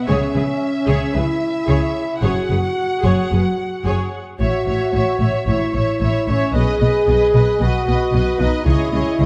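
A straight 4/4 pulse at 112 BPM drives this heroic, dramatic stretch of epic orchestral film score in F# dorian, cut from a longer piece and lasting about 9.3 seconds. A French horn section sits up front with sustained chords in a classical style, its tone warm with light vibrato, while cellos and double basses anchor the bass, the cellos soft in attack and expressive and the basses woody. Over them, a lush violin section carries the melody with rich, close vibrato and portamento. A second violin line runs smooth and even beneath it, and violas add full-bodied accompaniment. The harmony moves through C#m, F#sus2, A and B before landing on C#madd9 at 8.7 seconds. A moderate scoring stage reverb of 1.9 seconds and a dark, warm production give the strings and brass a natural sense of space.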